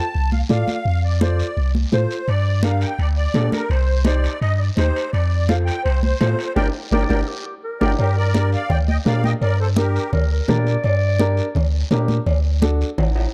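A straight 4/4 cumbia groove at 168 BPM drives this passionate, fiery Latin piece in G minor, cut from a longer performance. Hard-handed, damped congas and a raspy, close guiro set the pulse, while a deep, punchy sine sub bass with a pitch-drop attack sits up front. Ringing, metal-shelled timbales and cowbell join from 2.3 seconds, distant in a large room. A reedy musette accordion with shimmering tuning carries the melody over a woody upright piano as the chords move through F, G minor and C minor. A growling, gritty clarinet with vibrato and scooped notes adds a jazz-style second line. It first enters at 6.9 seconds, during a drum fill and band accent that begin at 6.6 seconds, then returns as the accordion stops at 10.1 seconds, before the harmony turns to D. Light reverb and studio ambience give the production a dark, warm cast.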